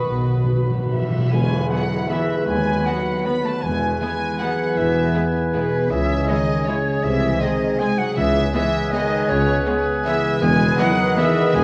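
Elegant and festive, this orchestral ballroom waltz in 3/4 sways with a rubato feel and is cut from a longer piece. A timpani fill played with medium mallets opens it, and at 1.3 s a band accent brings in the tuba and a very quiet tam-tam. A close, intimate violin section, bowed sul tasto with light vibrato, carries the melody. An airy, expressive flute, a dark, distant clarinet, a smooth-topped oboe and a second, floating violin section weave second lines above soft-attack violas. Mellow French horns hold sustained chords, a thumb-plucked, ringing harp plays arpeggios, and a punchy trumpet section adds stabs, while cellos, double basses and tuba share the bass as the chords pass through C#m and G#/B# to a closing Emaj7, the whole recording set in a wet recital hall with the warble and pitch drift of worn cassette tape.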